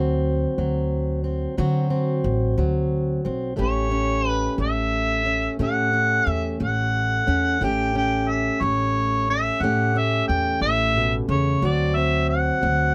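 A soulful, rollicking acoustic country blues in a straight 12/8, this excerpt opens on a full-bodied, fingerpicked plugged-in steel-string acoustic guitar and a woody, thumpy pizzicato upright bass over D7 before a mellow, vintage-toned harmonica enters up front at 3.6 seconds with light vibrato, soft attacks and scooped, jazz-style solo lines as the chords move to A7 and return to D7 at 11.6 seconds, all in a light reverb.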